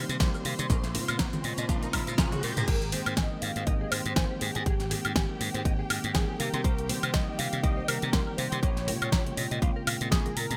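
A bell-like tine electric piano under a filter sweep opens this groovy, sunny nu-disco excerpt in Ab major at 121 BPM, with lush bowed strings, punchy slap bass, a twangy chorused clean guitar riff, a riser, and background maracas, congas and bongos building through a drum fill until the drop at 2.7 seconds, where a fat-snared pop kit with gated reverb, an up-front electronic kick and a thick, detuned sawtooth unison lead (entering at 2.2 seconds) ride a bright 1980s-style digital sheen over Abmaj9, Cm7 and Bbm9 chords.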